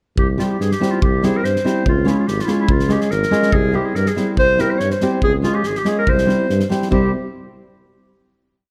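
A clear, soft-attacked clarinet leads this fiery, virtuosic Balkan wedding-band piece at 142 BPM in 2/4, spinning motif-based sentence phrases in C phrygian dominant over chords that shift between C and Db, its classical tone sounding both up front and distant in a roomy recital-hall reverb. Beneath it, a tuba with light vibrato and a smooth top plays root-and-fifth bass on the main beats, while a natural country drum kit drives a two-stick pattern with a punchy kick and medium-tuned snare. From 0.4 s, a fingerpicked nylon-string guitar adds warm, close-voiced off-beat chords with audible finger squeak, and the whole short piece closes on a final chord at 6.9 s.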